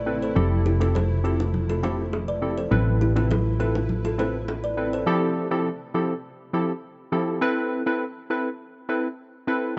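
A mellow, softly reverberant studio sound with a dark edge opens this sultry, smooth afrobeats excerpt in A minor at 102 BPM, where a round, punchy hollow-body bass sits up front beside chorused analog keys moving between Fmaj7 and Amadd9. A cloudy, evolving granular pad, a woody kalimba riff with tape echo, and bright, saturated congas and bongos in the background fill the opening; the congas and bongos drop out at about 4.6 seconds, and the pad, kalimba and bass fall away at about 5.0 seconds. The detuned, square-and-sawtooth keys carry on alone through the second section until 9.8 seconds.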